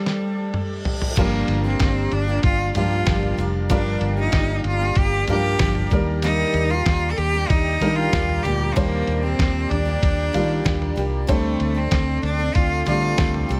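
A dry mix carries this dramatic, bittersweet piano-driven pop excerpt in G minor at 95 BPM, where a biting, vibrato-laden bowed cello sings the melody up front over a woody upright piano and a shimmering chorused pulse-width pad in the background, while a muffled, pitched-down sampler-style drum kit opens with a fill and an electronic reverse cymbal before a round, foam-muted electric bass and a full-bodied picked steel-string acoustic guitar riff join at 1.2 seconds as the chords move from Gm7 to Ebmaj7 and D7sus4.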